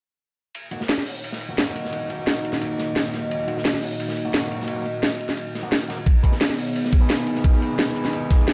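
A dark, warm production with light small-room reverb frames this tense, aggressive excerpt of technical drum and bass in Eb minor at 174 BPM, moving from Ebm to Abm at 6.1 seconds. A moody, detuned analog pad holds sustained chords with subtle chorus and sidechain pumping, while a gritty, saturated breakbeat kit with dark cymbals and a rolled-off top runs underneath, and a bright, overdriven electric guitar cuts in with stabs through a low-pass filter and dub echo. An up-front, cracking electronic snare enters at 0.9 seconds, and a knocking electronic kick joins at 6.1 seconds as the loudest element.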